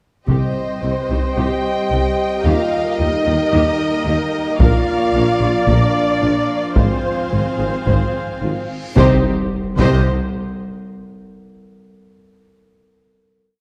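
Cinematic, epic orchestral film score in C minor at 111 BPM, dramatic and epic, moving through Cm, Eb, Bb and Fm/Ab before landing on a final C minor chord at 9.0 s. A focused violin section carries the melody with vibrato, doubled at the octave, while a clear, distant second violin line, an expressive viola section with portamento, a rich string section, mellow French horns and smooth trombones hold sustained chords; trumpets add stabs, and a rich bowed double bass section anchors the bass with a very quiet cello ostinato and a quiet tuba doubling it. Hard-stick taiko strokes open the piece and return at 4.6 s, timpani single strokes on C3 mark the start and close, and a huge, dark reverse cymbal swells into a low impact, heard in a reverberant scoring-stage room.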